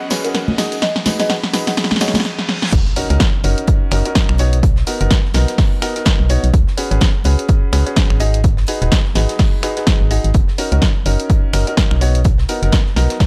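Gritty cassette-tape hardware sound in a small room frames this euphoric, joyful piano house excerpt, where a clear concert grand piano riff with sidechain pumping and analog delay runs throughout over a punchy analog drum machine, while a brief build-up brings a breathy pad, bright tambourine and congas, a buzzing, woody marimba in the background and a very quiet riser and reverse cymbal, then a stop gives way at 2.7 seconds to a drop marked by an impact, a hollow organ-like FM bass, an up-front electronic kick and a very quiet modern studio drum kit.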